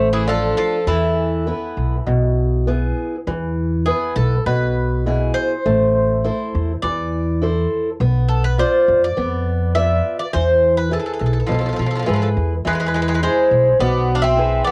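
A metallic, double-strung Greek bouzouki carries the up-front melody from the start, while a second, lower bouzouki line with a cassette-tape tint drops out at 2.6 seconds and returns at 11.5 seconds, all over a boxy, ladder-braced old acoustic guitar picking a taped accompaniment and a thumpy, gut-strung pizzicato upright bass, in a cool, brooding Greek folk excerpt at 102 BPM in 4/4 that speeds up throughout as the harmony moves from Dm and E to Am, Bdim and back to E, with light reverb on a home cassette recording.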